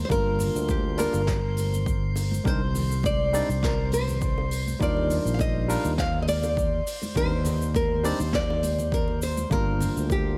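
A bright, fingerpicked nylon-string guitar sits up front carrying the melody, its small tone trailed by tape echo, in this wistful sunset chillout excerpt in C minor at 102 BPM with a gentle 16th-note swing. Beneath it, a sustaining fretless electric bass adds a growly, amped low end with tube saturation, while a clean, direct tine electric piano, also touched by tape echo, fills in the accompaniment from 0.1 seconds. The rhythm combines a punchy, layered electronic kick with overdrive and a distant jazz brush kit of cabasa, hi-hat and medium-tuned snare, its rolled-off top sounding roomy, alongside very quiet congas and bongos. High in the background, a drifting glass-harmonics texture adds calm, glassy overtones with chorus and reverb. The harmony moves from Gm7 through Cmadd9, Ebmaj9 and Cm9/Eb before returning to Gm7 at 9.5 seconds, all set in light reverb and small room ambience.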